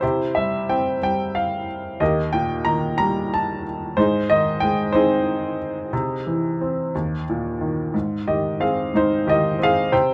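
The recording has a dark production with a moderate studio reverb, yet the solo baby grand piano sits up front, bright and brilliant, with an intimate presence and audible action noise from the instrument. This is a calm, peaceful piece of lyrical classical solo piano, heard as a short cut from a longer work. It moves slowly in 6/8 at 61 beats per minute, counted in dotted quarters, and the rubato gives the phrasing a free, breathing feel. The piano spans Eb2 to Bb5, and its short sustain keeps each chord clear as the harmony moves from C to Eb to Ab and back to C, touching an Eb5 chord before settling on Ab. A new section begins at 7.9 seconds and carries the passage to its close at 10.1 seconds.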